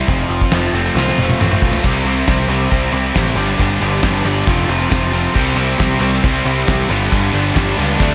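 A pair of bright, picked guitars, one overdriven and one tight and distorted with a slapback echo, opens this sunny, driving classic rock excerpt at 136 BPM. They are joined almost at once by a growling, overdriven bass and a damped 70s drum kit with a fat snare, tight kick and dark cymbals, and a drum fill from 1.0 to 1.8 seconds leads into a chord cycle through C, G and F. A very quiet, double-tracked third guitar slips in at 5.4 seconds, all set in a lush hall reverb that gives a big arena sound.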